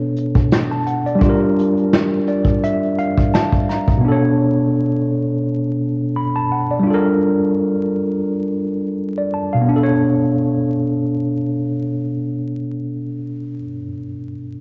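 A lightly swung 85 BPM groove in 4/4 opens this hazy, nostalgic lo-fi hip hop excerpt in B minor: a dark, up-front brushed drum kit with a punchy kick plays until 4.0 seconds, and a very quiet, round dub bass sounds a single low B at 0.4 seconds, while a worn, slightly out-of-tune tine electric piano, muffled by cassette tape and a low-pass filter, moves from Bm9 to Gm7, adds a fill and then carries the Bm9 and Gm9 chords alone through 14.6 seconds, all inside a wet spring reverb with vinyl crackle and faint mains hum.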